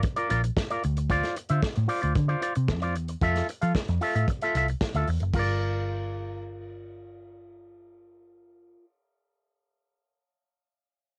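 Danceable and sultry, this short disco clip from a longer piece moves at 113 BPM in a straight 4/4, set in G dorian with tuning at A4 = 438 Hz. A clean, twangy electric guitar runs through an envelope filter and plays accompaniment up front from the start, carrying the tape character of a cassette. A warm soul drum kit of kick, snare, hi-hat and crash sounds distant and roomy despite its tight booth, with a medium-tuned snare and a tight kick, and it drops out at 5.5 seconds. A dark, round, foam-muted picked bass with an amped tone enters at 0.3 seconds and sits prominently under the guitar until 8.8 seconds. The harmony moves from a rootless Gm7 through Dm7 and Fmaj7 before returning to Gm7 as a new section begins at 5.3 seconds. The whole home cassette recording is dry, carrying little reverb.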